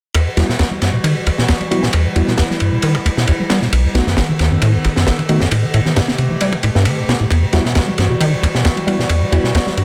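Swaggering and raw, this excerpt from a longer breakbeat piece moves at 134 BPM in E harmonic minor, cycling through Emadd9, B7 and Am7 before returning to Emadd9. A crunchy, up-front acoustic drum kit with a tight kick, medium-tuned snare and dark ride cymbal drives the groove alongside a rubbery, resonant acid bass riff that carries a filter sweep from 0.1 seconds to the end. Further back, a mellow tine electric piano plays stabs through dub echo while a warbling, nostalgic tape-like pad holds sustained chords with sampler grit and sidechain pumping, all set in light reverb.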